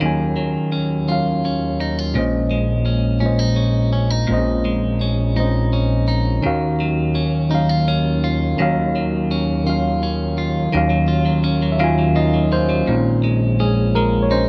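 A worn, slightly out-of-tune tine electric piano, a fat analog bass and a clean, picked electric guitar open together on Ebm9 in this slow, sultry six-eight R&B excerpt at 56 BPM, the mood yearning as the harmony moves between Ebm9 and Bbm11. The thick, saturated bass sits up front with a mellow, sustained tone and a filter sweep, while the compressed, scooped guitar carries a second line with a warbly pitch drift beneath the piano's combo-amp accompaniment. Light digital reverb surrounds the parts, and at 12.9 s the electric piano takes a brief solo over Bbm11.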